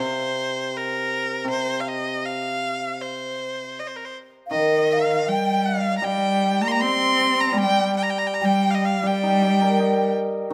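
A bright, biting erhu and a shimmering hammered dulcimer open this short, wistful passage from a longer Chinese chamber ensemble piece, moving in a free, rubato 4/4 around 80 BPM. The solo erhu carries the melody up front with vibrato and portamento, its focused bowed tone singing high over the dulcimer's ringing, hammered accompaniment. At 4.5 seconds a breathy alto ocarina and a clear, smooth cello join with second lines, the ocarina's clay tone and crisp attack sitting in the background while the cello's even, bowed voice sounds distant. The mood stays tender as these voices sound alongside the erhu's line. A moderate recital hall reverb gives the ensemble a natural sense of space until the cello and dulcimer close out at 10.5 seconds.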